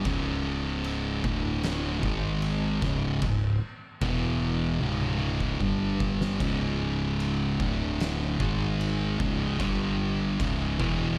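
Two thick fuzz guitars sit up front and carry the riff from the first moment, one dark and the other warm, both distorted and picked low in the register. The piece is a sludgy, hypnotic stretch of stoner and doom metal at 75 BPM in straight 4/4, set in C# phrygian and cut from a longer piece. Underneath, a growling picked electric bass adds a round, overdriven tone with tube saturation, sounding direct and amped. An oversized low-tuned acoustic drum kit brings a boomy kick, fat snare, toms and shadowy crash cymbals, its saturated, gritty sound set in a bright stone room, and it breaks into a fill at 4.8 seconds. A light reverb surrounds the mix, and the drums drop out at 11.0 seconds, just before the guitars and bass end.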